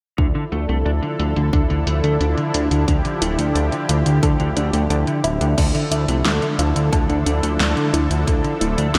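A bright, 1980s-style digital production bathed in a moderate plate reverb gives this nocturnal, moody synthwave excerpt its glossy sheen, moving at 89 BPM in a straight 4/4 in D minor and opening on a Dmadd9 chord. Up front, a soft, smooth supersaw holds sustained chords through an ensemble chorus and sidechain pumping, while a fat, thick analog bass with tube saturation carries the low end and undergoes a filter sweep until 5.6 s. A punchy, layered electronic kick drum plays alongside a pop drum kit with a fat snare, warm hi-hats and crash cymbal, its hats, cymbals and snare filtered and the kit treated with gated reverb; the kick drops out at 8.4 s. In the background, a dark, clean picked electric guitar plays a compressed riff through analog chorus, a low-pass filter and delay. From 2.9 s a round, nasal analog pluck adds quiet arpeggios colored by chorus, phaser and delay.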